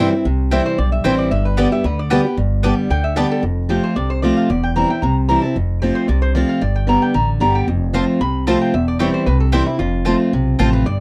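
A lap resonator guitar, played with fingerpicks and a steel bar, leads this joyful, rustic bluegrass excerpt at a brisk 226 BPM in straight 4/4. Its tone is nasal and metallic yet mellow as it solos across the whole 11 seconds, sitting back from the other parts. Up front, a picked acoustic archtop guitar gives boxy, warm accompaniment with audible finger squeak. An upright bass, also close, supplies a growly, thumpy, woody pizzicato low end. A mandolin with double strings adds warm, woody stabs, dropping out at 3.3 seconds and returning at 7.9. The dry, close studio sound has a 1970s character, and the chords move from C and Gadd9 through F, C/E and G.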